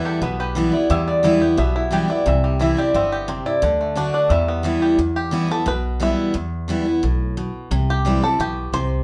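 A straight, driving four-beat pulse carries this haunting bluegrass excerpt, cut from a longer piece. A bright, full-bodied picked steel-string acoustic guitar sits up front with audible finger squeak, while the upright bass enters at 0.2 s with a woody, thumpy pizzicato. At the start, a lap resonator guitar played with slide and fingerpicks carries the melody with a metallic, nasal tone alongside the twangy, percussive banjo, as the harmony moves through Em, C and D. The resonator drops out at 4.8 s, and from 5.0 s the five-string banjo takes a solo over Em, shifting to C. A moderate studio reverb gives the ensemble a natural sense of room.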